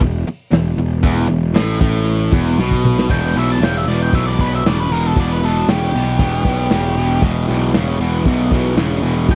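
A dry, close 1970s-style studio sound with light reverb gives this short cut from a longer piece a heavy, smoky blues rock and southern rock character, in E minor at 116 BPM in a straight 4/4. From the start, a double-tracked, overdriven electric guitar sits up front with a bright, picked riff in its low register over an E5 chord. Alongside it, a picked electric bass, also up front, adds a growly, amped fuzz edge. A vintage acoustic kit with a muffled, lo-fi small-room tone, dark cymbals, a tight kick and a medium-tuned snare drives the trio, and a drum fill from 2.6 to 3.1 seconds leads into the second section on E minor. There, a dark, picked octave-fuzz lead guitar with distortion and tape echo takes a solo in a higher range, sitting lower in the mix than the rhythm parts through to the end at 9.3 seconds.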